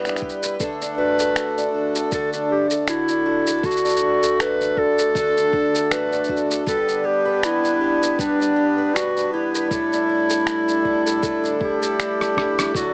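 Harmonium's reedy, breathing chords and a shimmering, octave-doubled fingerpicked twelve-string guitar open this hopeful, pastoral folktronica excerpt at 79 BPM in D major with a light sixteenth-note swing, joined by muffled, pitched-down sampler snaps, shaker, rim click and a thumpy kick, while a dark, smooth clarinet takes the up-front melody from 1.0 s over G, D and A7sus4, all heard through a small room with vinyl crackle and a small-speaker tone before a drum fill and band accent close it at 12.9 s.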